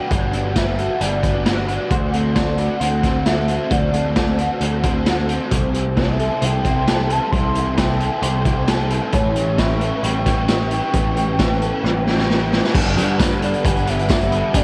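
A breathy, sine-like synth lead floats over chorus-washed guitar arpeggios and two overdriven guitar riffs, one trailed by reverse reverb, as gritty tape-saturated garage drums and a growling bass drive this blissful, dreamy shoegaze and dream pop excerpt in G major at 133 BPM, through Gmaj7, D7, C6 and A9, with a warbling tape-like pad entering at 6.1 s, a drum fill leading into a new section at 12.7 s and a faint jingly tambourine at 13.2 s, all in a small-room cassette home-recording sound.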